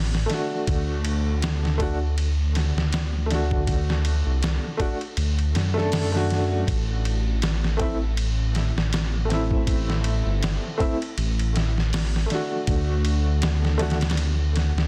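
A dry, dense and heavily limited sound frames this dark, smoky trip hop excerpt at 80 BPM, swung on the sixteenths, as a deep, rumbling detuned saw bass sits up front from the start, moving through D, Am and back to D. A gritty, pitched-down sampler-style drum kit with a thumpy kick, medium-tuned snare, hi-hat and ride adds tape-warm grit in a small room ambience. A brilliant, woody upright piano enters at 0.3 seconds with tremolo and tape echo, its long sustain ringing over the low end until 14.0 seconds.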